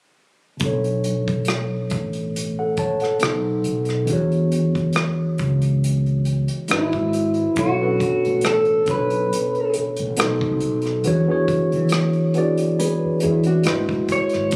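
Captured on a phone in a room with club reverb, this sultry, introspective neo-soul R&B excerpt at 69 BPM in B dorian sways with a light sixteenth-note swing as a worn, slightly out-of-tune tine electric piano, a round fretless bass with analog chorus and an unplugged drum kit played with bundle sticks on hi-hat, tight kick and rim click carry Bm9, B7b9, E13 and G#7alt chords, before a slightly broken-up electric guitar through a small old amp takes the melody with tape echo at 6.7 seconds and a thumb-plucked nylon-string guitar adds a brief second line at 12.8 seconds.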